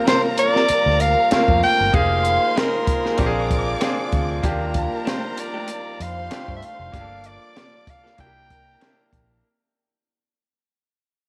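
A compact cocktail drum kit with a punchy kick and high-tuned snare sets a lightly swung 96 BPM groove in G minor, joined at 0.7 seconds by a round, foam-muted fingered electric bass, while a bright grand piano with audible action noise and a quiet, slightly broken-up electric guitar riff fill in the middle. Over this lush 1970s-style soul bed, a breathy, up-front soprano saxophone carries a smooth, bittersweet jazz-style melody, a bowed violin section adds an expressive second line with vibrato, and a distant, mellow French horn section sustains chords in the background. Moving through rich chords such as Gm11 and Ebmaj9#11 in an echo-chamber glow, this fragment of a longer piece fades out across its full 9.4 seconds.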